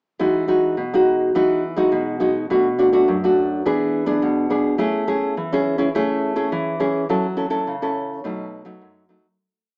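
A lone nylon-string guitar, dark and full-bodied with audible finger squeak, carries this festive, lively samba at 105 BPM in E major, fingerpicked up front with thumb bass under syncopated plucked chords. The short piece moves from Emaj9 through Bm7, E7 and Amaj7 before closing on F#m7 and B7 as it fades out from 7.1 seconds to 9.4 seconds. A moderate large-studio reverb surrounds the guitar, while a worn, warbling cassette-tape character with pitch drift and a small-speaker sound gives the whole recording an aged feel.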